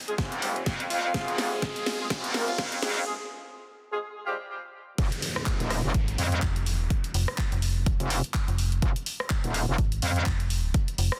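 A riser and downlifter open this bouncy, aggressive bass house track at 125 BPM in F minor, as tight horn stabs with digital delay, a brief breathy, raspy alto saxophone line on F4, a punchy electronic kick, a house kit with cracking snare, handclaps, hi-hat and rim click, and an up-front metallic wobble bass with chorus and overdrive carry a build-up that breaks at 3.1 seconds before the drop at 5.0 seconds. Shortly into the drop, at 5.9 seconds, a dark, digital FM bass joins the low end under light reverb and a dense, heavily limited master.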